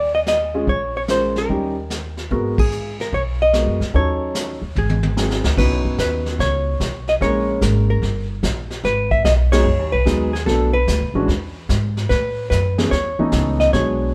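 A dark, clean hollow-body guitar carries the melody from the first moment over a woody, thumpy pizzicato upright bass, opening a smoky, moody slice of small-group swing and bop played live in one room with a moderate stone-room reverb. Brushes on a vintage kit with dark cymbals, a punchy kick and a rolled-off top join almost at once, and an intimate grand piano with audible action noise adds accompaniment from 0.5 seconds. The band hits a shared accent at 2.5 seconds, and a drum fill leads into a new section at 5.6 seconds, where the key moves from G# minor to C# minor.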